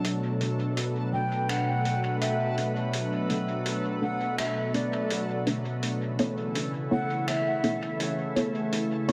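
Deep and spacious, this ambient dub cut from a longer piece moves at 83 BPM in B minor, shifting from Bm7 to A at 5.8 seconds. A pure, detuned organ-like pad holds sustained chords up front with ensemble chorus and a filter sweep, while muffled, pitched-down sampler drums of finger snaps and hi-hat sit under dub echo, and a reversed, granular swelling texture hovers in the background. From 0.4 seconds a muted, sawtooth-and-square chord stab with phaser and its own filter sweep joins the mix, and between 1.1 and 8.5 seconds a distant, airy flute with chiff and 12-bit grit carries the melody, all soaked in a dreamy plate reverb.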